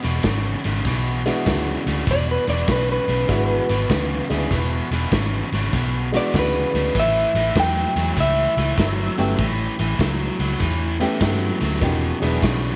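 A moderate echo-chamber reverb surrounds this swaggering, laid-back electric blues shuffle excerpt at 98 BPM in E mixolydian, where a biting overdriven guitar riff, a round, foam-muted vintage bass with transformer saturation and a raw garage drum kit with punchy kick, ride and snare play from the start, a woody upright piano with audible action noise joins at 1.3 seconds, and a slightly broken-up, lo-fi lead guitar through a small old amp carries the melody from 2.1 to 10.0 seconds over chords moving from E7 to A7 and back.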